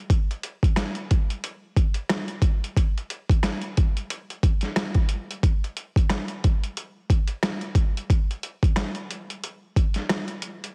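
A heavily compressed, radio-like sound with light reverb frames this short, gritty hip hop cut from a longer piece, its mood tough and its 16ths swung at 56% in 4/4. The only part is a boom bap sampler-style drum kit of kick, snare, rim click and hi-hat, sitting up front from 0.1 s to 10.7 s. Overdrive and vintage 12-bit sampler grit give it a crunchy edge, with a thumpy kick and a medium-tuned snare, and the whole kit sounds re-recorded in a small room.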